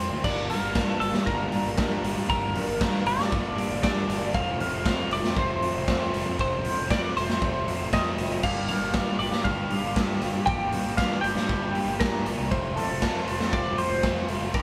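Indie rock at 117 BPM in G minor, restless and bittersweet, with a bright, twangy twelve-string electric guitar carrying the melody through a phaser over a biting, double-tracked overdriven guitar riff, a growling overdriven picked bass, and a raw, gritty garage drum kit that enters at 0.2 seconds with a punchy kick and a pumping stone-room sound, all played live in one room as the chords move between Gm and F.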